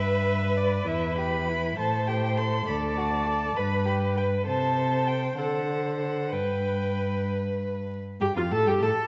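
A string quartet opens together on a G major chord, launching a quick, graceful classical-period movement in a lilting 6/8 at 66 beats per minute, counted in dotted quarters, with a cheerful, straight feel. The first violin carries the melody with a clear tone and vibrato, while the second violin plays a smooth, even second line beneath. The viola fills in the accompaniment with a focused sound that sits distant in the blend, and the cello anchors the bass with a rich, close presence that comes up front. The harmony moves through E minor, A minor seventh and D before returning to G, then cadences via D7 back home, with an unexpected F add-nine colour arriving at 8.2 seconds, shortly before the cello and second violin stop at 8.9 seconds. A moderate scoring-stage reverb lends the ensemble space, and a layer of vinyl crackle with a dulled top end gives this short fragment of a longer piece an aged sheen.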